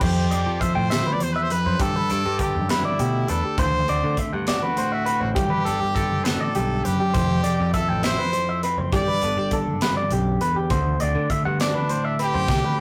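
A brilliant, up-front trumpet with light vibrato carries the melody in this playful, bright math rock and midwest emo excerpt in 6/8 at 67 BPM in G major, over a twangy, compressed clean electric guitar accompaniment, a second clean guitar picking high arpeggios, a direct picked electric bass, and a crisp fusion drum kit with a high-tuned snare and punchy kick, all moving through Fmaj9, Gmaj9 and D7sus4 chords in a rough rehearsal-room sound with saturation and moderate reverb, before a drum fill at 12.5 seconds.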